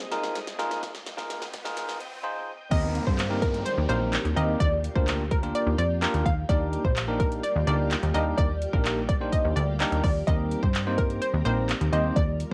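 A smooth R&B drum kit sits up front in this carefree, euphoric dance-pop excerpt at 127 BPM in 4/4. Its soft kick, fat snare, metallic hi-hats, handclaps and crash cymbal sound electronic yet re-recorded in a large room, with a drum fill marking the short build-up. Behind it, a vintage, organ-like ensemble string part holds warbling sustained chords in the background with ensemble chorus and sidechain pumping, while a riser and downlifter add electronic sound effects until 6.5 seconds. A bell-like tine electric piano plays clean, direct accompaniment from the start. At 2.7 seconds the drop arrives, bringing a punchy, funky analog bass built from detuned sawtooth and square waves with a filter pluck, plus a round analog pluck melody with a noise layer, chorus and a brilliant edge, as the harmony moves from Cm7/Eb through Gm7 to Ebmaj7. The home cassette recording is high-pass filtered and carries light reverb, with tape colouring on the drums, keys, pluck and organ-strings.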